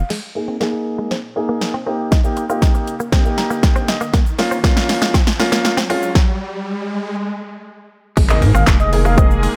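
Upbeat and euphoric, this dance-pop cut at 119 BPM in Ab major opens on a build-up. A clear, intimate baby grand piano plays chords under a low-pass filter sweep, a bright, twangy clean electric guitar riff sits in the background, and a house kit with a punchy kick and snare plays a drum fill, while a riser climbs from 1.4 seconds and the piano adds a fill of its own. After a stop, the drop lands at 8.2 seconds with an impact: the round analog bass brings a deep, sidechain-pumped low end, an airy, detuned pad spreads sustained chords, and a smooth, nasal synth lead with vibrato sings a short melody.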